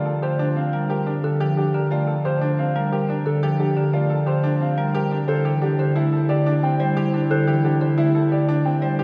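Set in a deep church acoustic, this meditative, hypnotic minimalist pattern piece in 6/4, cut from a longer work, pairs a dark, vintage baby grand piano singing a smooth, long-sustaining melody with a clear, worn grand piano spinning short-sustained arpeggios over a full, dry marimba accompaniment played up front with medium hard mallets, while a mellow, distant clarinet traces a quiet second line in the background, dropping out after 1.0 s and returning at 5.3 s as the harmony moves from Gm9 to Cadd9.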